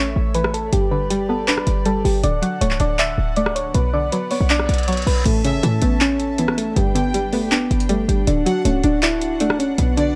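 A punchy, tight 808-style bass sits up front in this hard-hitting, melancholic trap excerpt, moving at 159 BPM in a half-time feel over a chord cycle of A, G, D and B minor. A booming analog drum machine enters at 0.3 seconds with metallic hi-hats, handclaps, rim clicks and crash cymbal, its tone tape-warm. Carrying the melody, soft electric-piano-like synth keys sound round and mellow, thickened by chorus and a slapback echo. A twangy, bright resonator pluck supplies accompaniment under them, while a studio string section holds pure, floating chords in the background. A reverse cymbal rises into the second section at 5.3 seconds, where a lush, distant violin section joins with an expressive second line colored by vibrato, all set in a dark production with light reverb and digital ambience.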